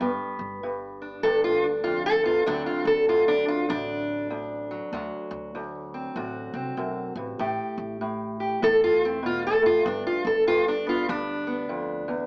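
Rollicking and gritty, this acoustic country blues excerpt swings at 97 BPM in D mixolydian, with a dark, boxy fingerpicked parlour steel-string guitar on old strings carrying the melody up front throughout its 12.3 seconds over a woody pizzicato upright bass in the background, moving through G7, D7, A5 and back to G7 in a moderate studio reverb with a small-speaker sound.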